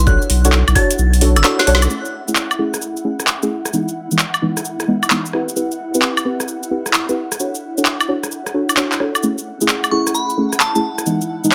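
Bouncy and moody, this cut from a longer two-step UK garage track swings along at 131 BPM in F# minor, with a garage drum kit of woody snare, metallic hats, handclaps, rim click, shaker and woodblock sitting up front beside a knocking electronic kick that soon drops out before a drum fill. A thick, saturated sub bass and a glassy, crystalline FM bell with phaser and delay open the piece, and both fall away by 1.9 seconds, when a filter sweep begins on the deep, warbling chord stabs that run through jazzy seventh and ninth chords. Throughout, an airy, breathy pad with 12-bit sampler grit pumps against the beat, and the bell returns at 9.9 seconds, all in light reverb.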